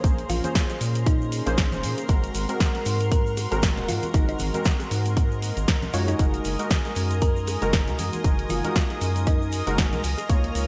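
Moody and hypnotic, this deep house fragment at 117 BPM with swung sixteenths moves through Bbm9, Ab9, Gb69 and Db69 as a punchy, up-front electronic kick and a layered house kit of hi-hat and snare with gated reverb drive a rubbery, hollow square bass, while round analog keys stabs with chorus and digital delay, a smooth, sidechain-pumped analog pad, a silky string machine with ensemble chorus, a blurred, evolving granular cloud pad, a gentle, tine-like thumb-piano-style pluck melody, a grainy tube shaker and close acoustic congas and bongos fill out a bright 1980s-style digital production with light ambience.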